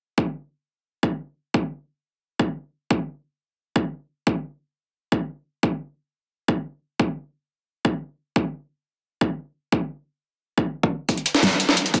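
A straight 4/4 liquid drum and bass pulse at 176 BPM opens with a punchy, overdriven electronic kick sitting up front in a small-room sound from 0.2 seconds, before a gritty, pitched-up breakbeat kit with a high-tuned snare and a layered pop kit with a fat snare and metallic hats join at 11.1 seconds, giving this soulful, dreamy excerpt a dense, heavily limited modern finish with light digital reverb.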